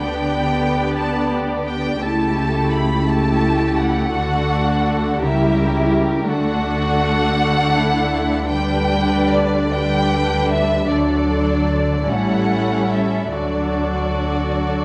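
In a rubato 6/8 moving at 45-58 BPM in dotted quarters, this serene fragment of a slow romantic movement for string orchestra in D major floats a lush, up-front violin melody over a smooth-topped chamber violin second line and soft-attacked violas, while a close cello section sitting in the background and a distant double bass section share the bass, all five sections bowed con sordino with a dark, veiled tone in a reverberant scoring-stage space.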